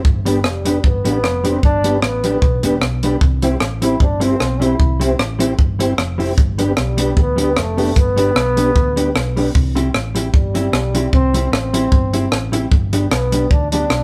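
Opening on a hollow-body fingered electric bass, round and dark, beside a dry compact cocktail kit with a punchy kick of hi-hat, kick and rim click up front, this joyful ska cut from a longer piece at 152 BPM in C major, lightly swung, adds a clean, compressed electric guitar, a flute-like tonewheel organ with chorus vibrato and fast rotary speaker that stops at 9.5 seconds, and a distant, roomy trombone carrying the cheerful melody with vibrato over G and C chords, all played live in one room with light reverb.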